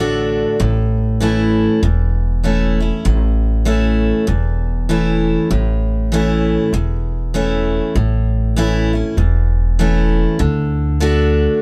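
Dry and intimate, with close, detailed miking, this short cut from a longer honky-tonk and classic country piece has a down-home, sunny mood at 98 BPM in 4/4, with a swung eighth-note feel in A major. A bright, full-bodied picked dreadnought acoustic guitar sits up front with audible finger squeak, beside a woody, thumpy upright bass with gut strings, played pizzicato and dark in tone. A very quiet, nasal slide resonator guitar played with fingerpicks appears only in the opening 0.8 seconds, while the harmony moves from D to a long stretch on A and returns to D at 10.4 seconds.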